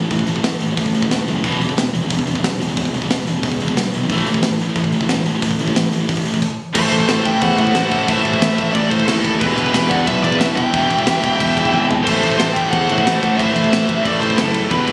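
Captured on a phone in the room with studio reverb, this aggressive, epic heavy metal excerpt drives at 181 BPM in 4/4, built on a high-gain rhythm guitar riff in the background, a very quiet tight distorted guitar, a growly fuzz-soaked fingered bass and a punchy, up-front rock kit with bright cymbals. Around 6.8 seconds the power chords give way to A minor and E minor as a double-tracked, crunchy overdriven guitar joins the riff and a warm high-gain lead guitar sings the melody over a darker second lead line set further back. A drum fill arrives at 11.7 seconds.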